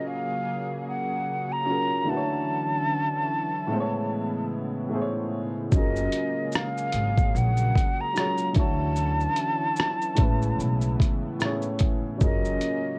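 A breathy, vibrato-laden concert flute carries the melody over a woody upright piano and a smooth, detuned sawtooth pad with chorus and tremolo, all softened by a low-pass filter, as this mellow, dreamy lo-fi hip hop excerpt drifts through F#maj9, Dmaj9 and Amaj9 chords at 74 BPM in 4/4. At 5.7 seconds a thumpy pizzicato upright bass on gut strings and a gritty, overdriven sampler-style drum kit enter. The kit's kick, rim click, hi-hat and shaker sit up front with a 16th-note swing. Light reverb and cassette tape colour give the whole piece a dusty, intimate feel.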